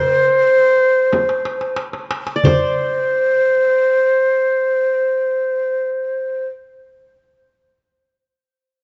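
Warm and stately, this brief cut from a longer piece is an Arabic maqam ensemble playing in free time. A breathy, end-blown reed ney carries the melody on a straight, tongued tone, close-miked and up front, with a cassette-tape colour to it. Beneath it, a plucked qanun with triple strings and a bright edge plays a second line across the whole 6.5 seconds, sitting well back from the ney and sharing that tape character. From 1.1 to 3.1 seconds a crisp metal-shell darbuka, heard in a live room, plays alongside a soft-handed, closely captured frame drum, and a drum fill runs until 2.5 seconds while the music slows down. Light reverb surrounds a home-recorded cassette sound whose top end is dulled, giving the performance an intimate, slightly worn feel.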